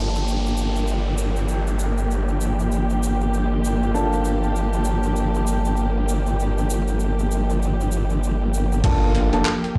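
The recording sounds as if it were playing through a big sound system in a bare room, with light reverb and a large studio ambience around a gritty, funky glitch hop passage cut from a longer piece. Up front, a formant-sweep wobble bass built from detuned pulse and sine tones sits very low, thickened by chorus and overdrive. Above it, a dark, lush string section holds bowed, vibrato-rich sustained chords on Gm7, while a mellow, boxy grand piano plays stabs in the background with tape echo. Both the strings and the piano pump against a sidechain and pass through a low-pass filter sweep. An electronic downlifter sounds over the opening seconds, and a grainy, close egg shaker carries the swung groove from 0.2 seconds. At 8.8 seconds a thumpy, overdriven kick drum arrives up front alongside a compressed, sampler-style boom bap kit of crash cymbal, handclaps and hi-hat, both re-recorded in a small room.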